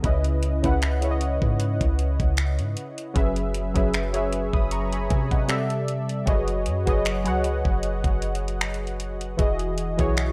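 A lightly swung sixteenth-note groove at 77 BPM in 4/4 carries this tender, romantic slice of contemporary R&B in B major, taken from a longer piece. The electronic drum kit sits up front with a knocking kick, metallic hi-hats and finger snaps, its produced sound re-recorded in a small room. Beneath it, a soft 808-style bass plays deep, round sine tones with a fast attack that decays into a dark low end. Mellow analog keys, also up front, spread detuned sawtooth chords thickened by chorus and shaped by a filter sweep, moving from C#m9 through F#9sus4, C69 and B69/F# before landing on Emaj9 at 9.4 seconds. The dry, gritty hardware sound keeps the whole groove close and intimate.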